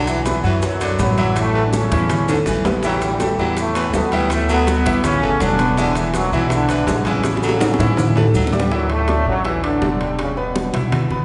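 A sunny, joyful salsa excerpt in D major at 163 BPM opens with an up-front, bright trombone section carrying the melody with light vibrato over a raspy, gritty baritone saxophone second line that sits in the background until 8.5 seconds. A brilliant, slightly worn concert grand piano with audible action noise and a woody, thumpy pizzicato upright bass on gut strings fill out the harmony from a Bm start. Warm, hard-handed congas, grainy maracas, ringing metal-shell timbales and round, low-tuned bongos drive the groove, with drum fills before the shift to a new section at 8.7 seconds, all bathed in a lush church reverb.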